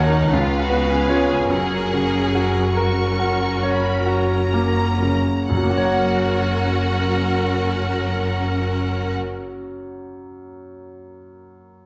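Classical and lush, this lyrical excerpt unfolds in a slow, rubato 3/4 in F# major, with a brilliant, up-front baby grand piano carrying the melody alongside a rich, vibrato-laden violin section, while a second, distant violin line, a clear viola section, and a smooth cello and double bass section fill the harmony and low end. The opening slows as it moves over C#7 to F#, and at 5.5 seconds round, softly struck timpani join in the background. The strings fall away at 9.1 seconds, leaving the piano's long sustain ringing alone until 11.9 seconds in a wet scoring-stage reverb.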